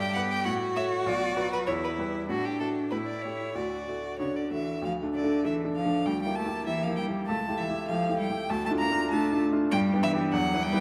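Spirited and lively, this quick classical-period movement for piano trio moves at 98 BPM in a straight 2/4, heard as a short portion cut from a longer piece. It opens in D major and turns to D minor at 4.8 s, passing from chords such as A, Bm and A7 to Dm and G. A single bowed violin carries the melody up front with a rich, smooth, even tone and vibrato, sitting at the top of the texture. Beneath it, one bowed cello plays a focused, close second line with its own vibrato. The baby grand piano supplies the accompaniment, natural and up front, its notes ringing with long sustain. All three play throughout, bathed in a reverberant recital hall that lingers for 1.7 s.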